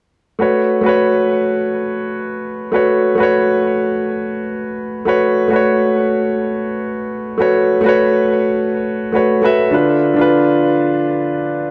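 Chillout in free time and A major, this blissful, sunny excerpt features a clear concert grand piano up front with deep bass and long sustain, playing accompaniment from 0.4 to 11.7 seconds through a low-pass filter and delay in a moderate plate reverb, moving from an A69 chord to Dm6 at 9.7 seconds.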